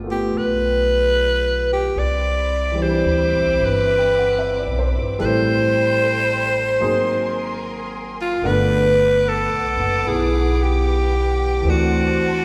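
Intimate and late-night, this swung jazz ballad excerpt features a growling, breathy alto saxophone carrying the melody up front, over polished grand piano and woody pizzicato upright bass, with lush bowed strings entering at 1.9 seconds to hold sustained chords as a wet recital hall reverb surrounds them.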